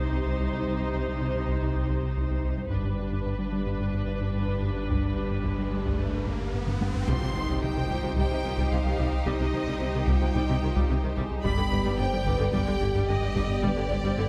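This is a cinematic, hybrid orchestral and electronic film score in C harmonic minor, moving at 110 BPM in a straight 4/4 with a relentless, brooding mood, cut from a longer piece. From the start, a hollow, flute-like pad with chorus holds sustained chords in the background. Beneath it, a rubbery, wave-folded square bass riffs over a deep, saturated sub bass, and distant viola and close, expressive cello sections add bowed accompaniment. Heavy-stick taiko drums enter at 2.7 seconds, quiet and dry. An electronic riser builds from 4.7 seconds into a drum fill and an impact at 7.1 seconds, where lush studio violins take the melody in the range from D5 to C6. At that point a second symphonic violin line, mellow French horns holding distant chords, and a very quiet, smooth double bass section join, all set in a moderate scoring-stage reverb as the harmony alternates between Cm and G.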